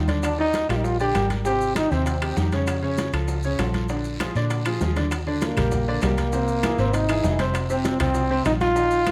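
Salsa at 197 BPM in Eb major, festive and sunny, with a bright, punchy vibrato trombone leading up front from 0.2 to 2.4 seconds and again from 5.4 seconds, over a clear, short-sustained grand piano and a dark, foam-muted electric bass, while background congas, round low-tuned bongos, ringing timbales, woody claves, a raspy guiro and grainy maracas fill out the light reverb of this cut from a longer piece, with a drum fill arriving at 4.7 seconds.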